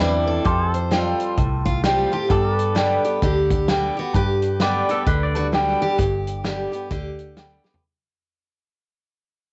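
A swung 4/4 groove from a natural, small-room country drum kit with a punchy kick, entering at 0.5 s, joins a dark, round, foam-muted electric bass to drive this easygoing, down-home honky-tonk excerpt, where a bright, jumbo picked steel-string acoustic carries the melody over a boxy, up-front ladder-braced acoustic, a very quiet, woody upright piano and clean pedal steel chords with volume swells and subtle chorus, while a twangy electric guitar adds a brief second line with tape echo at 4.9 s before the cassette home recording fades out from 6.0 s.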